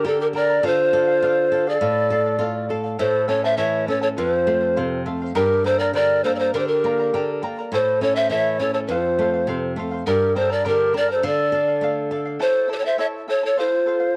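A light reverb surrounds this short cut from a longer piece, with the pan flute sitting up front. It is an earthy, festive Andean folk tune in D minor, moving at 102 BPM in a straight 2/4. The pan flute carries the melody with an airy, woody tone, a crisp chiffing attack, rolled-off highs and a slightly unsteady vibrato, while a large end-blown quena adds a softer, tongued second line full of expressive vibrato beneath it. The charango accompanies throughout with fingerpicked double strings, some octave-doubled, giving a shimmering glow, and a bright flamenco guitar, finger squeaks and all, fingerpicks the lower accompaniment until it drops out at 12.4 s. The harmony circles through Gm, Dm, A and F, with the closing bars leaving the winds and charango to carry the tune.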